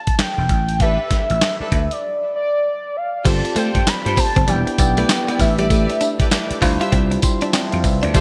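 R&B in a new jack swing style, this bouncy, punchy passage from a longer piece moves at 98 BPM in 4/4 with a 62% sixteenth-note swing, set in D dorian and tuned slightly below standard pitch. An up-front, velvety synth lead carries the melody through a chorus and low-pass filter with a touch of vibrato, over a dusty, sampler-style drum kit of thumpy kick, medium-tuned snare, hi-hat, handclaps, tambourine and crash cymbal that carries vintage 12-bit grit. A growly, amped slap bass holds the low end while a rich, bowed studio string section adds filtered stabs beneath, and a break arrives at 2.0 seconds. A bell-like tine electric piano with analog chorus enters at about 3.2 seconds, joined at 3.3 seconds by a twangy, direct-recorded clean guitar riff sitting in the background, and the lead drops out at 6.6 seconds. The harmony moves through A9sus4, Dm, G9sus4, Em7, A9sus4 and Dm11, all wrapped in a moderate plate reverb and a bright 1980s-style digital sheen.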